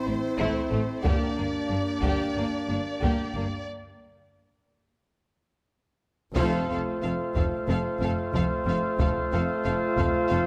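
A cinematic, epic orchestral cue at 91 BPM opens with a lush violin melody over clear woodwind and mellow French horn chords, a second violin line, warm violas, and cellos and double basses on the bass, all joined at 0.4 seconds by heavy-stick taiko drums in a live room, moving from A minor to G minor before a break at 3.7 seconds and an accent at 6.4 seconds where dark, up-front trumpet stabs enter on an F chord, the whole dramatic passage set in moderate scoring-stage reverb and cut from a longer piece.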